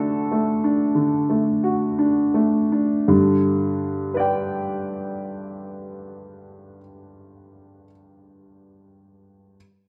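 Neoclassical minimalist piano in G major, hopeful and tender, with a solo upright piano, warm, woody and boxy, placed up front and playing rubato around 54-64 BPM from G2 to G5, slowing over the first 3.1 seconds as the harmony moves from D to G, all set in a moderate stone room reverb in this 9.6-second cut from a longer piece.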